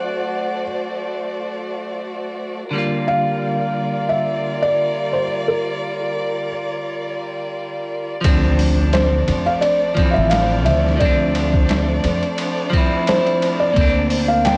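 A dry, cassette-recorded home sound frames this brooding, hypnotic trip hop excerpt, where a muted, felt-softened upright piano carries the melody through 12-bit sampler grit and tape echo, over a bright, twangy, slightly broken-up electric guitar with harmonic tremolo, and a close, bowed violin section holding expressive sustained chords with vibrato and portamento, until at 8.2 s a gritty, pitched-down, sampler-style drum kit with a thumpy kick arrives up front, followed at 8.3 s by a woody, growly pizzicato upright bass and at 8.4 s by a very quiet electronic impact.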